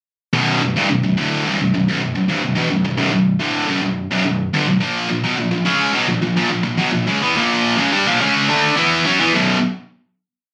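A bright, double-tracked electric guitar with heavy high-gain distortion opens the piece at 0.3 seconds, playing an aggressive, dark power-chord riff alone in B harmonic minor at 107 BPM, moving from B minor to A#5. The picked guitar sits up front and spans B1 to E4. At 9.3 seconds it lands on a final B5 chord, all of it heard as if captured on a phone in the room, with light studio reverb and compression.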